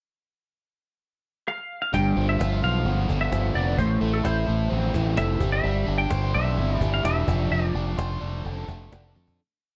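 A dry, close 1970s-style studio sound frames this short indie rock piece, moody and cool. A clean, compressed semi-hollow guitar enters alone at 1.5 seconds with a motif-based melody through analog chorus and slapback echo. At 1.9 seconds the pre-chorus begins over chords moving from G7 to F6: a double-tracked, biting overdriven guitar picks arpeggios up front, a growling fingered bass with overdrive drives eighth notes, and a woody cajon with faint snares plays a soft-handed pop groove, before the piece fades out from 7.5 seconds and closes on a drum fill.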